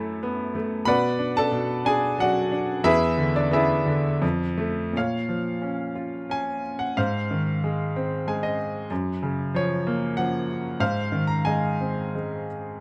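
A clear, intimate baby grand piano plays alone in lyrical classical style, moving in a rubato 3/4 at roughly 82-97 BPM with a bittersweet, brooding mood, its harmony drifting through seventh chords before settling into Bb minor at 5.0 s. A brief fill at 8.0 s adds a flourish as the harmony moves toward richer major colours. The piano sits up front, captured by close, detailed microphones that keep the action noise audible within light reverb, in a passage cut from a longer piece.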